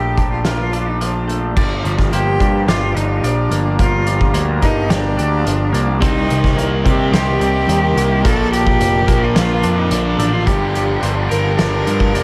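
A steady, straight 4/4 pulse at 108 BPM from a roomy, punchy indie drum kit, alongside an up-front overdriven fuzz bass, drives this brooding, cinematic post-rock passage in G minor, where an intense, distant bowed cello with vibrato sings the melody through tape echo over a smooth detuned sawtooth pad with chorus, twangy and twelve-string electric guitars arpeggiate in the background, a compressed fuzz guitar riff surges in at 6.0 seconds, and a tight distorted guitar takes over at 10.5 seconds as the music builds.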